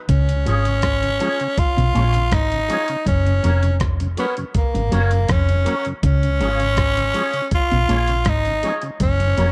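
A raspy, edgy tenor saxophone carries the melody up front in this uplifting roots reggae excerpt at 81 BPM in Db mixolydian, moving between Db and Gb chords. Beneath it, a dark, foam-muted fingered bass and a gritty, tape-warm sampler-style drum kit with a thumpy kick, hi-hat and rim click anchor the groove, while a clean, fingered electric guitar with subtle chorus plays a riff in the background. A round tonewheel organ with key click and slow rotary speaker joins at 0.3 seconds, a twangy envelope-filtered guitar with ensemble chorus follows at 0.5 seconds, and digital ambience surrounds the mix.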